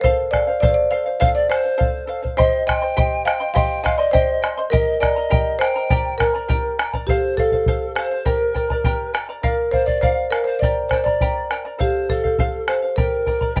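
A straight 2/4 pulse at 102 BPM carries this wistful, melancholic Andean folk excerpt, where a deep, dark, up-front bombo anchors a warm marimba melody struck with medium mallets, a fingerpicked charango shimmers on its double strings as accompaniment, and from 1.2 s a pure, wooden pan flute with vibrato, tongued chiff and lifted highs adds a second line, all under light reverb as the music moves from an opening section into a second one at 7.1 s.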